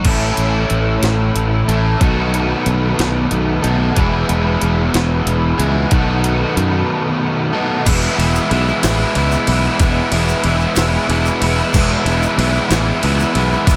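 This short excerpt has a light, airy reverb and a lively, carefree indie rock feel in a lilting 6/8, its jangly mood carried by two overdriven electric guitars playing picked, compressed riffs throughout. One guitar sits up front with a round, full-bodied tone, while the other is brighter and shimmers through ensemble chorus and tape echo. Underneath, a sustaining fretless electric bass adds a growly, direct low end, and a jungle sampler-style drum kit, compressed, pitched up and gritty with overdrive, supplies a thumpy kick, high-tuned snare, hi-hat, ride and crash. At 7.9 seconds, as the chords turn back to E, a very quiet vintage combo organ joins with buzzy, heavily vibrato-laden sustained chords, alongside a faint, grainy egg shaker recorded in a live room.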